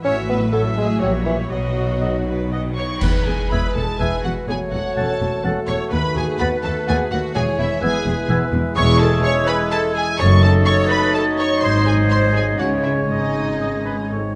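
Set in a straight three-beat lilt, this playful, whimsical film cue has a magical, quirky air and is cut from a longer piece. A smooth violin section carries the melody with vibrato, while a second violin section adds a rich background line, a viola section glides with portamento, and a focused cello section and a lush double bass section hold down the bass. Among the woodwinds, a pure, hollow silver flute sounds distant, a present clarinet and a warm oboe trace their own lines in the background, and a dark bassoon supplies accompaniment. A French horn section holds sustained chords, and a ringing harp plays arpeggios throughout. A cymbal swell, bright clash cymbals and concert bass drum open the cue and mark a full-ensemble accent at 3.0 seconds before stopping at 4.0 seconds, and the harmony turns toward a minor colour from 8.8 seconds. The close, detailed recording sits in light reverb.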